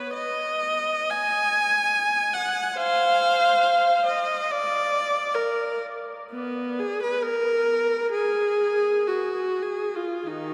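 A rich, smooth solo viola, bowed by one player with vibrato and heard close and up front, plays unaccompanied from 0.0 to 10.5 s in this meditative, lonely classical fragment cut from a longer piece, drifting freely in Eb minor at a rubato 46-74 BPM across a range from Eb3 to Ab5 within a long, wet cathedral reverb.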